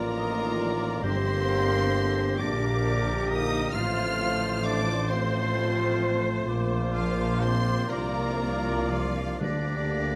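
Melancholic and yearning, this slow romantic orchestral movement in G minor sways in a rubato 6/8 at 38-46 BPM (dotted quarters), with a woody, softly bowed violin section carrying the melody over a clear, intense chamber violin line, a gentle oboe, a pure, hollow silver flute, a distant clarinet and lush violas, while mellow horns and trombones hold sustained chords, a very quiet thumb-plucked harp rings out arpeggios, tuba, cellos and double basses anchor the bass, and hard-mallet timpani sound at 1.0 and 9.4 s, set in a wet scoring-stage reverb with a dark, warm production.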